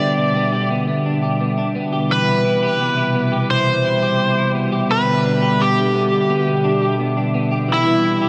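From the first moment, a bright, overdriven slide guitar carries the melody up front over a hollow, flute-like pad holding dark sustained chords and a twangy, slightly broken-up electric guitar picking arpeggios through chorus and delay, as this floating, ethereal dream pop fragment moves between Em7 and Cmaj7 inside a huge, wet ambient reverb.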